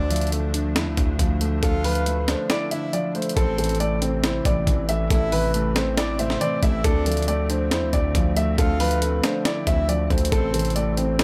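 This brooding, hard-hitting hip hop and trap excerpt opens in A minor at 138 BPM with a half-time feel, as a felt-muted upright piano, a distorted 808-style bass, a breathy flute-like synth lead carrying a second line through chorus and delay, a hollow, warbling pad in the background and an up-front, gritty breakbeat sampler-style kit with a thumpy kick all sound in the first moments, over chords moving between Dmadd9 and Am. A dark baby grand piano enters at 1.6 seconds with the melody, its long sustain trailing through delay, while the 808 bass stays heavy and aggressive beneath the intimate, thick-felt upright. Light reverb surrounds the parts, with breaks from 0.0 to 1.6 seconds and 2.5 to 3.4 seconds before a second section begins at 3.4 seconds.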